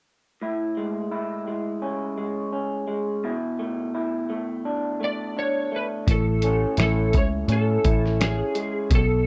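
A dreamy, laid-back slice of indie and bedroom pop in A major, moving at an unhurried 85 BPM with a gentle swing. An electric guitar through a small old amp opens at 0.4 seconds, its twangy, slightly broken-up tone bathed in lush chorus and a warbly pitch drift as it sits on Amaj7 before shifting to E7sus4/B. At 5.0 seconds a slide guitar played with fingerpicks carries the melody, compressed and coloured by ensemble chorus and tape echo. The groove arrives at 6.1 seconds as the chords return to Amaj7: a dark, foam-muted picked bass with a round, amped tone joins a lo-fi, sampler-style drum kit with a thumpy kick, a medium-tuned snare and hi-hat, all muffled and compressed. The recording has the dry, close feel of a 1970s studio session with a touch of digital ambience, and the piece is cut off just after 9 seconds.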